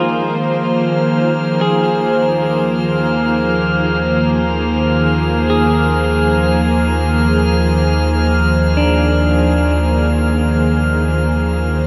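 This serene, weightless ambient excerpt in free time opens on a dark, up-front string section bowed sul tasto in soft-attacked sustained chords over an Fm/Eb harmony, joined by a calm organ-like drone and a clean electric guitar picking delayed arpeggios in the background. A glassy, drifting texture of high overtones enters at 0.8 seconds, and at 2.7 seconds a deep, ominous, rumbling bass drone swells in slowly beneath, while the guitar falls away at 10.5 seconds. All of it sits in a vast, echoing space with a long ambient reverb.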